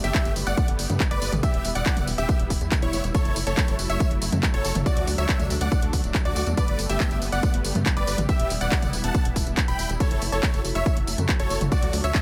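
Uplifting trance at 140 BPM in 4/4, euphoric and bright, cut from a longer piece and cycling through Gadd9, Em, F#m7 and D. A huge detuned supersaw lead carries the melody over a silky, string-like analog pad and a round, warbling pluck set in the background, both lead and pluck trailing dub echo, while a tight, driving sequencer bass with tube saturation pumps beneath them. A punchy, up-front electronic kick enters at 0.1 seconds alongside a tape-tinged house kit of handclaps, hi-hat, tambourine and toms, with sidechain pumping breathing through the kit, bass, pad, pluck and lead in a digital ambience.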